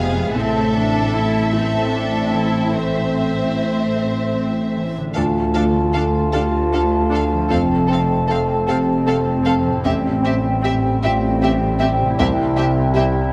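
A cinematic, emotional film score for orchestra in D minor, this bittersweet passage of longing moves at a slow, rubato 51 BPM in 6/8 and is cut from a longer piece. A rich chamber violin section carries the melody with focused vibrato, while a lush symphonic violin section shapes a smooth second line and a clear, intense viola section sits in the background as accompaniment. Beneath them, a grand piano with long sustain, a mellow French horn section holding sustained chords, and a very quiet, ringing harp playing fingerpicked arpeggios fill out the texture, supported by a bass of even cellos and woody double basses. At 5.1 seconds a pure, hollow silver flute enters on a second line, joined at 5.2 seconds by a very quiet solo clarinet in classical style as the harmony moves from A minor through D minor, F and A minor seventh to C. The ensemble is framed by a moderate concert hall reverb.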